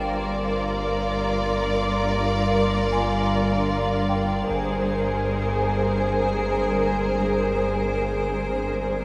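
Cinematic suspense score in free time, uneasy and ominous, this short cut from a longer piece sets muted, veiled violin sections on a melody and an up-front second line over a cloudy, evolving granular pad, while a very quiet high violin texture drops out at 4.1 s. Beneath them, muted cellos and lush double basses carry the bass as a deep, punchy sine sub bass holds a low drone, and a worn, slightly out-of-tune celesta adds delicate bell-like glints in the background. The harmony shifts from Gm7 to Abadd9/G at 4.5 s, all bathed in a wet scoring-stage reverb.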